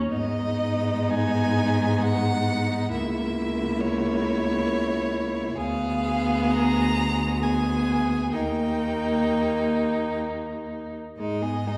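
A lone viola opens this melancholic, solemn slow movement for string quartet, its focused, vibrato tone laying down a G# minor accompaniment before a violin melody, a second violin line and a cello bass enter at 0.1 seconds, each part bowed by a single player. Moving with rubato in 3/4 at around 59-68 BPM, the music passes through G#m, A#dim/C#, Ddim7 and D# before settling back on G#m at 11.2 seconds, with the second violin sounding smooth, even and distant beneath the rich upper melody while the cello sits up front. A wet scoring stage reverb places the quartet further back in the room in this fragment cut from a longer piece.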